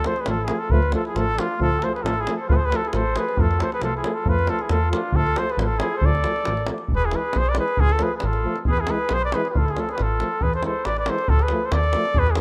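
From the first beat, a fiery, bittersweet Balkan brass band tune in swung 2/4 at 136 BPM and D dorian sharp4 sets a soft-attack trumpet with vibrato carrying the melody up front over a punchy, dark plucky analog bass, a tight davul, a clear flugelhorn second line and two euphoniums in the background, moving from Dm and F to rocking Dm–E changes at 6.9 seconds, with moderate plate reverb lending space to this rough home-demo fragment cut from a longer piece.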